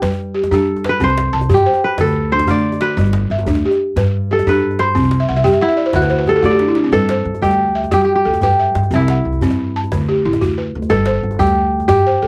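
A home cassette recording with light reverb captures a flowing, joyful excerpt of West African string and xylophone music in 12/8. An up-front, crisp, ringing, fingerpicked kora carries the melody as a solo until 6.9 seconds, over buzzing, dry balafon arpeggios struck with soft rubber mallets, both colored by cassette tape, while a warm pizzicato upright bass with steel strings anchors the low end and a tight, cracking djembe with metal rattles, played with soft hands, adds a fill from 6.1 seconds just after a woody balafon fill begins at 5.2 seconds.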